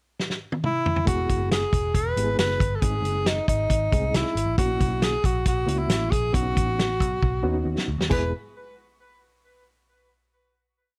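Uptempo 1960s-style soul in E major at 136 BPM, in a straight 4/4 with an uplifting, joyful mood across a short complete piece. A dry, up-front drum kit opens with a fill at 0.2 seconds in the pickup bar. Its tight kick, medium-tuned snare and dark cymbals drive a backbeat soul groove, and a second fill at 7.2 seconds leads into the final chord. Moments later, the breathy tenor saxophone takes the lead, whispered and intimate with vibrato, scooped notes and tape echo, shaping a jazz-style melody built from short call phrases. From 1.1 seconds a reedy, barky electric piano, lightly overdriven and with tremolo, pushes close-voiced chords with grace notes, while a round, foam-muted picked bass plays a syncopated, melodic line with chromatic approach notes. The verse moves through E, G#, F#7/A# and Badd9 before resolving to E, heard in a small room.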